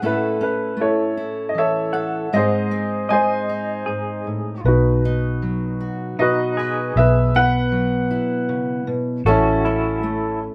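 Melancholic and intimate, this short cut from a longer acoustic folk-pop ballad in 3/4 sets an upright piano's woody, long-sustaining melody up front over a fingerpicked steel-string acoustic guitar with full-bodied old strings and a dark, slightly broken-up electric guitar playing arpeggios through a small old amp with a tremolo effect, while a round, foam-muted electric bass joins at 4.6 seconds as the chords move from A through G# and B to Esus2/B under light reverb.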